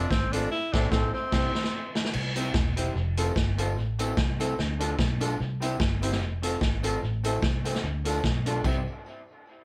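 A breathy, whispered tenor saxophone leads the opening of this cheerful, bouncy ska excerpt in C major at 148 BPM with a light swing, playing an intimate melody with scooped notes before it drops out at 1.9 s. A band accent and a drum fill carry the music to 2.1 s. Underneath, a slightly broken-up, lo-fi electric guitar with dub echo accompanies while a woody, slightly detuned upright piano plays stabs over a round, foam-muted fingered bass. An up-front vintage drum kit with a punchy kick, dark cymbals and dub echo drives the groove beside a jingly, very quiet tambourine, all in a live-room sound tuned slightly flat of standard pitch.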